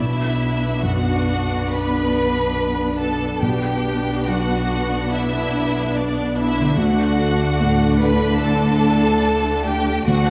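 Set in the moderate reverb of a scoring stage, this bittersweet, moving cinematic fragment, cut from a longer piece, flows with a rubato feel as a distant, focused violin section carries the vibrato-laden melody over a second, expressive violin line, while a soft, felt-muted upright piano with audible action noise, a smooth, even viola section, a roomy French horn section holding warm sustained chords, very quiet ringing harp arpeggios, and a lush cello section over a bowed double bass section fill out the harmony as it moves from B minor to D at 6.8 seconds.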